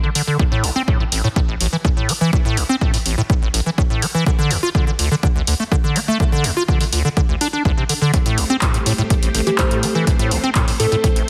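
A squelchy, resonant square-wave acid bass opens this gritty, raw acid house excerpt at 124 BPM in A minor, its riff pumping against the sidechain with analog chorus and delay as a tape-warm analog drum machine of handclaps and hi-hat and an up-front, punchy electronic kick drive a straight 4/4 groove. At 8.1 seconds a lush, vintage string machine ensemble swells in on an Am7 chord, followed at 9.5 seconds by a round, warbling FM synth lead with cassette-tape character and analog delay. The mix is heavily compressed for a radio-style punch, set in light reverb.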